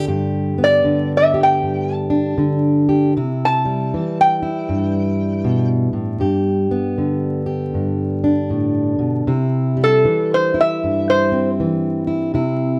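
A dark, warm production with vinyl crackle and a moderate studio reverb frames this laid-back, soulful acoustic country blues fragment, cut from a longer piece. At 78 BPM in 4/4 with a swing feel on the eighth notes, a fingerpicked, plugged-in jumbo steel-string acoustic guitar sits up front with a full-bodied accompaniment in C major, moving through G and C chords. At 0.6 seconds a metal-body resonator slide guitar, played with fingerpicks, joins alongside it, carrying the melody in a warm, metallic, nasal voice in its upper register. From 9.3 seconds the resonator takes a solo with a steel bar, its metallic slide lines singing over the accompaniment until it stops at 11.5 seconds. The instruments are tuned slightly below standard pitch, to A4 = 438 Hz.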